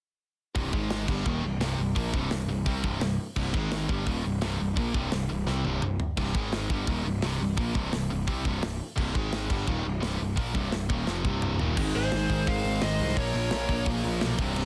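A tight metal drum kit, a fuzz-laden electric bass and two distorted guitars enter together at 0.6 s, driving a relentless, epic heavy metal riff in C phrygian at 171 BPM in straight 4/4. The up-front guitar is bright, while a sludgy, overdriven second guitar sits in the background, and the picked bass adds a growly, direct-and-amped edge beneath them. The drums sit up front with brilliant cymbals, a medium-tuned snare and a compact kick, and break into two fills as the riff circles between C and A-flat power chords and C minor. At 11.8 s the harmony moves to A-flat and then B-flat minor as a very quiet, double-tracked high-gain rhythm guitar and a rich, floating string section join. At 12.0 s a dark, high-gain lead guitar with tape echo plays a short melody, joined by a warm second lead line in the background. The mix is dense and heavily limited with light reverb, cut from a longer piece.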